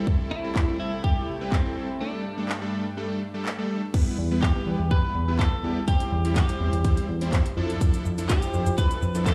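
Heard through a big sound system in a bare stone room, this dance-pop excerpt carries light reverb and the smeared edges of lossy compression. At 124 BPM in a straight 4/4, it feels confident yet bittersweet, moving through chords such as Gsus2, Em and C/E. A layered, up-front electronic pop kit drives it with a punchy kick, metallic hi-hats, handclaps, shaker and crash cymbal. A fat, vintage polysynth of detuned sawtooths pumps against the sidechain with a warbling, full-bodied tone, while a clean, picked twelve-string electric guitar carries the melody through tape echo. A lush supersaw pad with a slow attack holds sustained chords through a break starting at 2.0 seconds and stops at 3.9 seconds, and at 4.2 seconds a glossy, retro chorused synth bass joins, its pulse-wave and sawtooth tone shaped by a filter sweep and pumping with the sidechain.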